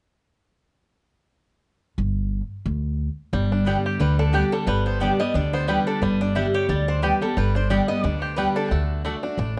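A twangy, percussive banjo carries the melody in this joyful, virtuosic bluegrass excerpt, its fingerpicked line touched by a slapback echo. A thumpy, woody upright bass plays alone from 2.0 seconds, plucked on gut strings and sitting up front. At 3.3 seconds the banjo and a full-bodied jumbo steel-string guitar enter together, the guitar supplying warm picked accompaniment. A double-strung mandolin adds picked stabs, and from 4.0 seconds a bright, metallic lap resonator guitar, played with slide and fingerpicks, brings a nasal second melody. Swung eighths give the band a lively drive, and light reverb surrounds the acoustic ensemble.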